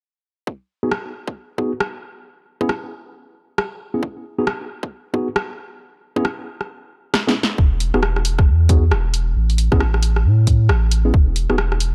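A tight, layered electronic kick opens this sunny, bouncy two-step garage groove at 0.5 s, joined almost at once by clean, mellow tine electric piano stabs shaded with a low-pass filter and delay, and a punchy analog drum machine supplying tape-warm hi-hat, rim click and snare. After a drum fill, a deep, thick, saturated sub bass with sidechain pumping enters at 7.6 s. The dark, dry production keeps every part up front.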